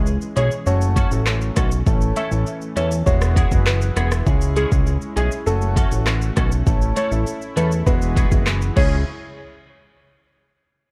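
A clear grand piano with audible action noise, a smooth analog pad pumping under chorus and tremolo, and a fat, detuned sawtooth bass open this sultry, tough dancehall excerpt, joined almost at once by an overdriven electronic drum kit with a deep kick, handclaps, rim clicks and shaker, and then at 0.4 s by a soft, round pluck melody with chorus and delay and a bright, twangy electric guitar playing arpeggios, set in a dark, lightly reverberant mix that cycles through C#m, F#m, A and Eadd9.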